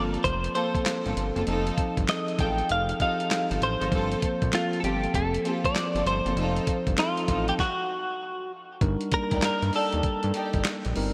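A bright, picked clean electric guitar with analog chorus carries the melody up front in this punchy, bouncy new jack swing excerpt at 98 BPM, swung on the sixteenths and moving through Gm11 and F7 before a stop at 7.6 seconds and a turn to Ebmaj7/G at 8.8 seconds. Beneath it, a fat, detuned sawtooth analog bass with a filter pluck and a gritty, compressed sampler-style kit of thumpy kick, snare, hi-hat and handclaps drive the groove, while a mellow tine electric piano comps and a woody, bowed studio string section adds stabs. The bright 1980s-style digital production sits in a lush hall reverb.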